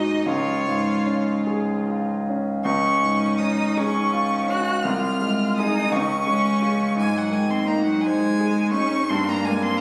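Heard as if from a phone in the audience, this recording sits in a wet recital-hall reverb that lingers for about 1.5 seconds. It is a short cut from a slow, serene romantic movement for piano trio in 6/8, played with flexible rubato. A clear, close violin carries the melody high above, its bowed line smooth and even with vibrato, placed up front. Beneath it a rich cello adds a bowed second line, also close and steady with vibrato. A warm concert grand provides the accompaniment up front, with deep bass, an open tone and long sustain. All three play throughout the 9.8 seconds, and the harmony moves through several chords before arriving at a rootless chord at 9.1 seconds.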